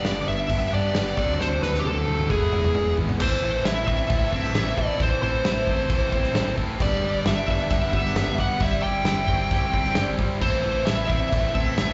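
A fuzzy, compressed lead guitar sits up front in this moody, cool indie rock excerpt at 133 BPM in A dorian, carrying the melody between G4 and G5 with distortion and slapback echo. Beneath it, two picked, overdriven guitars play riffs with slapback echo, one glinting with analog chorus, over a round, hollow-body fingered bass and a loose acoustic drum kit with dark cymbals and a punchy kick that plays a fill from 1.4 to 3.2 seconds. It sounds like a live club gig heard through the PA, with light reverb and a muffled top end, as the chords move from G through D7 and E to Am.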